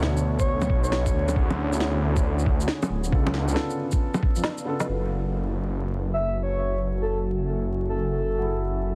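Wistful and rainy, this future garage excerpt moves at 136 BPM in F# minor with a swung 16th-note feel. A felt-muted upright piano plays a soft, mellow, intimate accompaniment through 12-bit sampler grit, low-pass filtering and analog delay, resting on a deep, moody pad that sits dark in the background with chorus and reverb. Underneath, a menacing detuned saw bass swells up front with tube saturation, and the piano, pad and bass all pump against the beat. A compressed, pitched-down, thumpy kick and an overdriven woody electronic snare lead the drums, with shaker and bongos, until a drum fill at 4.4 seconds, after which the drums stop at 4.9 seconds as a filter sweep moves across the piano. A breathy, flute-like synth lead with vibrato, subtle chorus and tape echo carries the melody briefly at the start and returns at 6.1 seconds, over chords moving from Bm9 through Dmaj9#11 and C#7b9b13 to F#m9, all within a dense, heavily limited master flecked with vinyl crackle.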